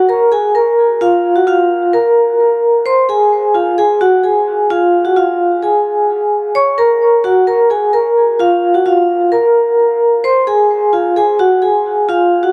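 A springy reverb and heavy dub echo hang over a small room, with a lone vibraphone struck by medium hard mallets sitting up front, its ringing, metallic tone dark and smooth under a medium motor vibrato. This menacing, hard-hitting hip hop excerpt moves at 130 BPM in a half-time 4/4 feel in F phrygian, the vibraphone playing solo across the full 12.5 seconds. Its chords shift from Bb5 to Fm at 2.9 seconds and touch Gb at 6.5 seconds before circling back through Bb5 to Fm.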